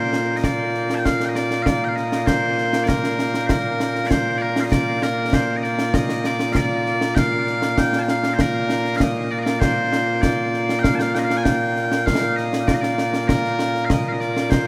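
This is Scottish traditional pipe music, a proud and ceremonial passage cut from a longer piece, moving at 98 BPM in a straight 4/4 in B-flat major, tuned slightly low to A4 = 438 Hz. Loud bagpipes carry the melody alone from the very start, sitting up front with a bright, piercing and continuous tone that spans from Bb2 to A5, and a slapback echo trails their sound. A concert snare drum and concert bass drum join at 0.1 seconds, acoustic, close and dry, with dark cymbals among them. The whole passage unfolds as one unbroken section lasting until 14.7 seconds. A huge, wet ambient reverb with a long 7.4-second decay places the listener further back in the room, giving the performance a grand, cavernous setting.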